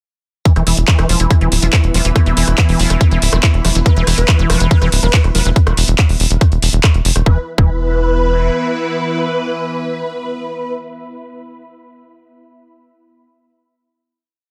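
An overdriven, up-front electronic kick drives this intense, hypnotic psychedelic trance piece at 141 BPM in 4/4, joined by a punchy, saturated sequencer bass, a squelchy acid line with dub echo, and a drum kit of metallic hats, rim clicks and handclaps through a drop that runs from 0.5 to 7.3 seconds. A bubbling stepped-filter drone and an ethereal, airy pad pump beneath the groove, while a swarming, detuned rave lead with phaser and portamento enters at 3.9 seconds and carries on into a final chord. The dense, heavily limited mix stays dry overall, keeping the rhythm section tight and close.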